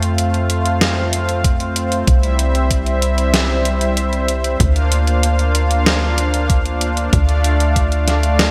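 A bright, 1980s-style digital production sits in a lush hall reverb of moderate size, giving this short synthwave excerpt a nostalgic, uplifting glow. At 95 BPM in a straight 4/4 in F major, a brassy, bold analog pad sits up front with detuned sawtooth tone, a soft attack and a filter sweep, holding sustained chords colored by chorus, tremolo and sidechain pumping. Beneath it, a tight sequencer bass drives along in a low register, its sawtooth and square-wave tone shaped by a punchy filter pluck with a fast attack and a mellow decay, and it also pumps with the sidechain. A clean 12-bit drum machine plays hi-hat and a fat snare up front, sampler-style and tape-tinged, re-recorded in a small room and washed in gated reverb. An electronic kick with a thumpy, similarly room-recorded character joins at 1.4 s and drops out at 7.9 s. The harmony moves from F to C, then Bbadd9/D, and settles on Dm.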